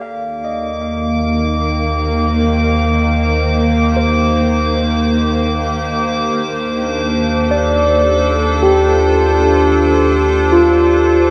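In free time, this serene ambient piece, cut from a longer work, fades in a morphing, detuned wavetable pad of sustained chords with chorus and cassette warble alongside gritty, overdriven tine electric piano arpeggios heard through a combo amp with tape echo and plate reverb, all over a deep, round sub bass, while from 0.4 s a tense, string-like bowed drone with vibrato fades out alongside a glassy texture of drifting overtones, the harmony shifting from Eb6 to F6/Eb at 6.3 s within the wet reverb of a home cassette recording.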